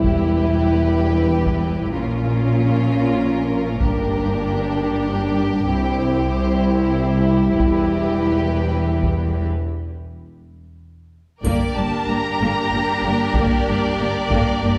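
A slow, straight 6/8 pulse at 63 BPM, felt in dotted quarters, drives this heroic, epic stretch of orchestral film score, cut from a longer piece. Close taiko drums struck with hard sticks anchor the rhythm, while a focused, close cello section and a smooth, even double bass section carry the bowed low line with vibrato. Above them, a dark French horn section holds tight sustained chords in the background, and violas add expressive accompaniment with portamento. One violin section sings the lush melody with a soft attack, while a second, clear and intense yet distant, traces a line beneath it. The harmony moves through Em, Bbm, Gm and C in a build-up that reaches a break at 9.5 s, then lands in G minor at 11.5 s, just as a bright triangle, entering at 11.4 s, glints faintly in the background until 12.7 s. A generous scoring-stage reverb places the orchestra further back in the room, lending the sound a grand, spacious sheen.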